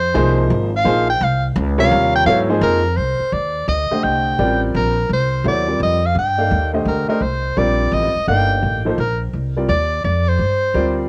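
A breathy soprano saxophone opens this searching, cool modal jazz fragment in three with a solo, its scooped notes and light vibrato tinged by cassette tape, over a woody, thumpy pizzicato upright bass, while a smooth, vintage grand piano carrying the same cassette tape color accompanies as the harmony moves from Bb9sus4 to Cm11 at 3.0 seconds, set in the light reverb of a home cassette recording.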